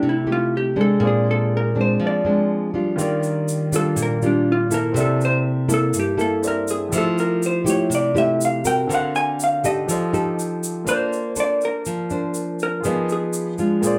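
A dark, compressed vintage hollow-body jazz guitar takes an up-front solo through the first 10.9 seconds of this romantic, breezy bossa nova excerpt at 122 BPM, over a thumb-plucked classical nylon-string guitar with audible finger squeak and a clear concert grand piano with deep bass, while a grainy, bright egg shaker joins at 3.0 seconds and the band, playing live in one room with wet studio ambience, settles into Bb major at 10.9 seconds.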